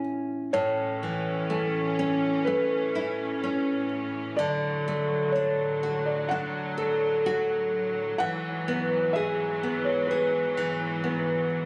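An up-front, fingerpicked nylon-string guitar opens this sleepy children's lullaby excerpt, moving through A, D and Eadd9 with a loose, rubato feel. From 0.5 seconds, a soft, boxy felt-muted upright piano carries the gentle melody, while a clear studio string section sustains bowed chords beneath it with light vibrato and an earthy bite. The recording was made on a phone in the room, with light studio reverb and compression.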